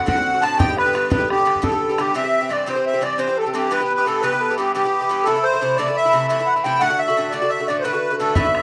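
Celtic folk in the form of a slip jig, this cheerful, rollicking fragment of a longer piece moves at 116 beats per minute in 9/8 with a straight feel. A reedy, sweet accordion carries the melody up front, close and dry, its light tremolo tuning giving the tone a shimmering fullness. Beneath it, a very quiet baroque flute traces a second line in the same register, airy and crisp with a straight wooden tone. An Irish bouzouki, picked on doubled metallic strings, supplies the accompaniment from up front. A damped, tight bodhran drives the opening until 2.1 seconds, then returns briefly at 8.4 seconds, heard in a moderate small-room ambience as the harmony moves from D7 and G through C, Em and Am back to D.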